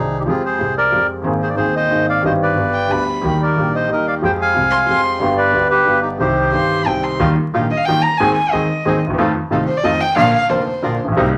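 A small, wet room and a bed of vinyl crackle frame this dramatic, sultry tango excerpt, taken from a longer piece and moving at 182 BPM in a rubato 3/4, in C minor before turning to Eb major at 7.2 s. Up front, a reedy, dark, smooth bandoneon carries the melody until 6.8 s, over a clear, woody, slightly detuned upright piano whose long sustain fills out the accompaniment. In the background, a pizzicato upright bass on steel strings gives an acoustic, warm footing, while a second, boxy bandoneon adds stabs. From 2.7 s a single bowed violin joins with a second line, played sul tasto with light vibrato, a soft attack and an airy, nasal, intimate tone. That close violin then takes the solo through the closing stretch as the harmony moves from Ebadd9 through Ab/Eb and F7 to Bb.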